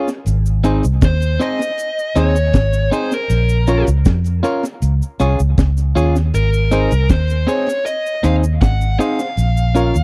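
A dry, close recording in a 1970s studio style, this short cut from a longer roots reggae piece has a laid-back, unhurried mood in straight 4/4. Up front, a deep acoustic drum kit with a tight kick, a high-tuned snare and hi-hat carries a dark, rolled-off top and a touch of tape echo, while a vintage foam-muted fingered bass sits alongside it, round and amped. An electric guitar at the edge of break-up plays picked, compressed accompaniment through dub echo, and a barky, reedy electric piano adds lightly overdriven stabs from the background, heard through its built-in speakers. A cabasa sits quietly at the back of the mix. From 1.0 seconds a dark, smooth, overdriven lead guitar takes the melody with its own dub echo, riding over chords that move from Ab through Bbm and Db before returning to Ab.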